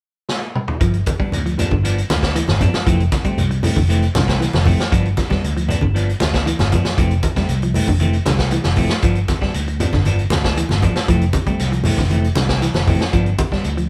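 A vintage drum kit sits up front in this hypnotic, funky afrobeat excerpt, its punchy kick and medium-tuned snare sounding mid-forward with a rolled-off top, and a short drum fill opens the track at 0.3 seconds. At 0.8 seconds a dark, round fingered electric bass enters, amped and sitting low beneath the band as the harmony sways between G7 and Fmaj7. Two clean, picked electric guitars join at the same moment, one playing arpeggios in the background while the other adds stabs higher up. Low-tuned congas with a thick skin come in at 1.1 seconds, tucked behind the kit in a small-room sound. The whole band plays live together in a moderate stone room, whose reverb gives the groove a shared, natural space.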